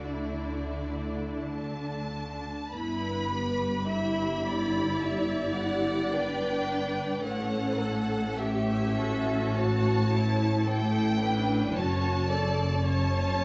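A slow, rubato pulse in 4/4 drifts between 41 and 57 BPM in this serene, tender passage from a romantic movement for string orchestra, tuned to A4 = 435 Hz. Up close, a rich, smooth violin section sings the melody with vibrato over a lush second violin line, a distant viola accompaniment, and bowed cellos and a clear, focused double bass section holding the bass as the harmony moves from D5 through Em/G at 2.7 seconds, then A7 and F#m. A moderate scoring stage reverb lends the strings a gentle bloom, while a vinyl crackle adds an aged texture.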